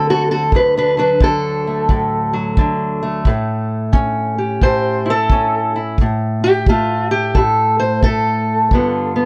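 A dry, close 1970s-style studio sound frames this brief, soulful and laid-back acoustic country blues excerpt at 88 BPM with a swung feel, where an up-front, dark, boxy parlour steel-string guitar fingerpicks the melody from D2 to C5 over a D, A7 and G7 progression while a tight, natural kick drum played with brushes in a small room joins at 0.5 seconds.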